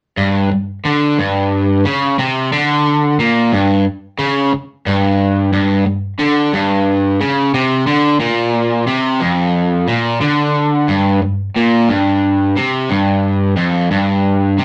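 A straight 4/4 pulse at 90 BPM drives this short rock cut, taken from a longer piece, with a sunny, forward-pushing mood. A lone electric guitar carries the whole passage, entering at 0.2 seconds and playing until 14.6 seconds, its picked, overdriven tone crunchy and warm. The part sits low, between F2 and D3, and it is double-tracked and placed up front, which gives it a thick, solid presence. The music moves into a new section at 10.9 seconds, shifting the passage for its closing stretch. The sound is a rough rehearsal-room recording with tube saturation adding grit, while a moderate studio reverb lends a short sense of space around the guitar.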